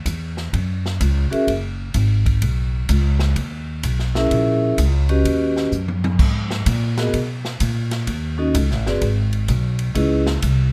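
Ringing, metallic vibraphone played with medium mallets enters at 1.3 seconds over a woody, thumpy upright bass and an airy, polished drum kit with a punchy kick and a brief fill at 5.7 seconds, in this smoky, swinging small-group jazz excerpt in G# minor at 127 BPM, caught with close, detailed microphones and little reverb.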